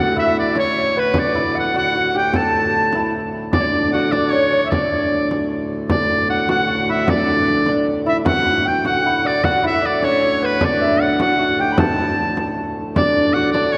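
Medieval dance in 6/8 and D major at 102 BPM, ancient and festive, where a clear, up-front shawm with vibrato and scooped notes carries the folk-style melody over a distant, chiffy alto recorder, a mellow fingerpicked lute with gut double strings, a reedy, breathing harmonium drone and a close, dry frame drum struck with hard hands, all within a wet church reverb in this short cut from a longer piece.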